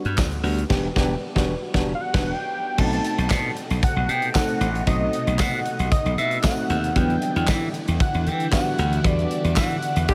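Punchy, bright slap bass drives this late-night, danceable early-eighties boogie funk excerpt alongside a modern studio drum kit with handclaps and a punchy kick, glassy chorused FM electric piano and a very quiet jingly tambourine, with a fat, detuned analog lead carrying the melody through analog delay from 1.9 s, a swirling phased string machine adding sustained chords in the background from 2.8 s, a smooth-topped horn section arriving at 10.1 s, band accents punctuating the groove, and a huge, dreamy reverb soaking the mix.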